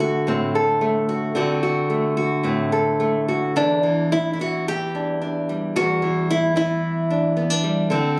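A bright, fingerpicked nylon-string guitar with fresh strings plays solo and up front in this intimate, reflective folk piece in E minor at 110 BPM, moving from D7 to Em7 at 3.6 seconds, its small sound caught on a phone in the room with light club reverb in a short cut from a longer performance tuned to A4 = 439 Hz.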